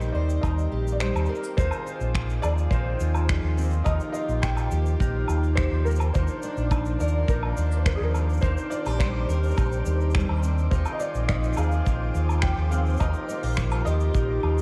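A filter sweep opens on shimmering, octave-doubled fingerpicked twelve-string acoustic guitar arpeggios, joined from the start by a felt-muted upright piano melody with ensemble chorus and diffuse delay, reedy, breathing harmonium chords in the background, a round, amped electric bass up front, and dark, brushed shaker, woodblock and finger snaps, with a tight kick arriving at 0.4 seconds. This pastoral, hopeful folktronica cut from a longer piece moves through Cm7, Fm, Ebadd9 and Bb in a straight 4/4. From 2.0 seconds a grainy, flickering, detuned texture drifts in softly behind, all set in a dreamy mix soaked in lush hall reverb.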